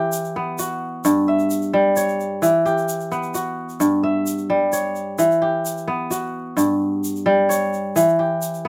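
A ringing, fingerpicked kora sits up front, spinning crisp arpeggios from G2 to E5 over Em and C#dim/G at 87 BPM in a straight 12/8, while a grainy egg shaker adds bright percussion in this hypnotic, joyful fragment of West African traditional string music cut from a longer piece, caught with close, detailed microphones and light reverb.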